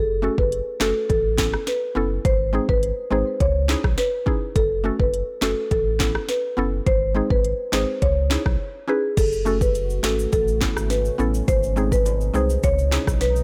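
A woody marimba played with medium mallets carries the melody up front in this tough, sultry dancehall cut, its rosewood bars trailed by delay. Beneath it, a round, sine-based sub bass sits mellow and sustained, while a mallet-like FM synth pluck with a noise layer adds percussive, decaying accompaniment, treated with chorus and sidechain pumping. The electronic afro-pop drum kit is produced and forward, with a deep kick, sharp snare, crisp hats, handclaps, rim clicks and crash cymbal. After a short break at 8.6 seconds, a new section opens at 9.2 seconds and brings in ringing acoustic tube shaker and timbales played with hard hands in a small room. Soon after, a dark, moody sawtooth pad with detuned unison, a sub octave, slow attack and long release settles in the background, washed in chorus and its own reverb, as the dry mix cycles through F#m, Aadd9, G# and C#madd9.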